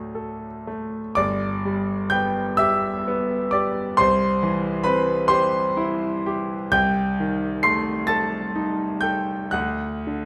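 Bathed in a wet recital-hall reverb, a bright, brilliant concert grand piano sits up front with natural tone and deep bass, spanning G1 to C7 in a tender, dreamy romantic nocturne in G major, its slow 6/8 pulse of 43 dotted-quarter beats stretched by rubato as the harmony moves from D to G at 1.2 seconds, through C and Am7b5/C, and back to D at 9.5 seconds in this brief passage cut from a longer piece.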